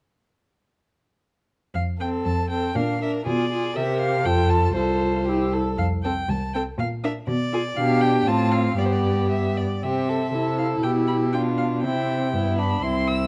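A dark production with moderate reverb from a large studio frames this quick, cheerful and graceful classical-period movement for string quartet in F major, taken from a longer piece and moving at 120 BPM in 2/4 with a rubato feel. At 1.7 seconds the first violin enters with a focused, smooth-topped melody sung with vibrato, while the rich, up-front cello carries the bass. The second violin adds an expressive second line and the warm viola supplies accompaniment from 2.0 seconds, both bowed with vibrato and portamento, as the harmony passes through Bdim7 and C7 before a second section arrives at 9.8 seconds.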